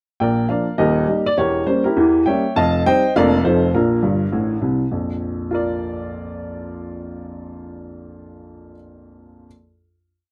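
A clear, woody upright piano carries this short, playful stride piano piece on its own, sitting up front with a natural tone and long sustain. It swings at a brisk 204 BPM in 4/4 in Bb major, with a tune in the upper hand over a stride bass that reaches down to Eb1. The harmony moves from Bb through Eb and an Edim7 to F9 before resolving home to Bb. A quick piano fill arrives at 4.0 seconds and leads into a held final chord from 4.9 seconds. A moderate booth ambience gives the piano a snug, intimate setting.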